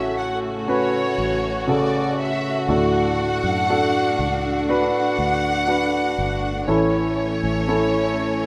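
A concert grand piano, violin section, string section and fingered electric bass all sound together from the start of this longing, melancholic pop excerpt at 60 BPM, moving from F#m/A through D to A. The up-front violins carry an expressive, vibrato-laden melody over the piano's intimate accompaniment, whose audible action noise and long sustain sit in plate reverb alongside the violins. Beneath them the woody string section holds sustained chords, and a round, foam-muted bass anchors a rough home-demo mix in a moderate studio room.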